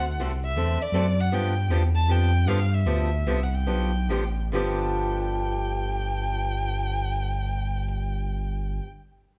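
Swung eighths roll along in 4/4 at 135 to 159 BPM, with the tempo slowing between 1.3 and 4.5 seconds in this charming, playful acoustic string swing excerpt in G mixolydian. A picked acoustic guitar carries the accompaniment, its fresh strings sounding bright and a little boxy as the harmony moves from D7 to G7 at 1.3 seconds. Above it, a single bowed violin sings the melody with expressive vibrato and gliding portamento, its tone warm with a smooth top and set in plate reverb. Underneath sits a synth bass blending sawtooth and triangle tones through a moving notch filter, with fast attacks, sustained notes, vibrato and portamento, dark and placed up front. The whole group sounds as if heard from further back in a wet studio room, and the music moves into a new section at 4.5 seconds.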